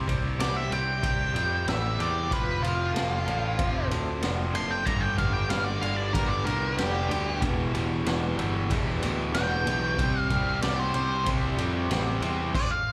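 Quiet-loud alternative rock at 94 BPM, bittersweet and anthemic, captured live through a club PA with small-room reverb: a dark, up-front octave-fuzz lead guitar solos from 0.4 seconds over a twangy, lo-fi tremolo guitar playing arpeggios, a cranked stack guitar riff tucked in the background, a compressed fuzz guitar riff that joins at 4.9 seconds, a growly, punchy picked bass, and a gritty garage drum kit with a high-tuned snare and boomy kick, moving through C, F6, G, Em and C5 in this fragment of a longer piece.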